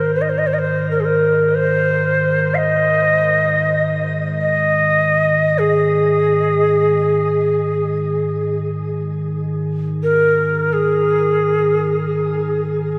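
A mellow, hollow cedar flute in the Native American style and a deep, rumbling drone open together, setting a peaceful, spacious mood in free time and Ab major pentatonic. The airy, woody flute carries the melody with vibrato and a soft attack, sounding distant yet up front through shimmer reverb and delay. Beneath it, the dark, ominous drone sustains with a slow attack and long release, and a huge ambient reverb surrounds this brief passage cut from a longer meditation piece.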